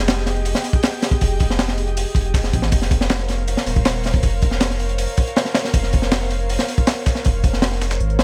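A crunchy breakbeat drum kit sits up front in this short drum and bass and jungle excerpt, its gritty, saturated sound pairing a punchy kick and a high-tuned snare with hi-hats under a rolled-off top in a small room. Beneath it, a deep, thick sub bass with a fast attack holds sustained low notes for the full 8.2 seconds, adding its own saturation up front. An airy, breathy pad with a slow attack, long release and chorus drifts over the chords Fm9 and Bbmadd9, its detuned, ring-modulated tone staying soft and mellow behind the beat. In the background, a dusty, compressed sampler-style kit adds a fat snare and hi-hats, both thinned by high-pass filtering. The straight groove and small-room ambience give the piece a raw yet nostalgic mood.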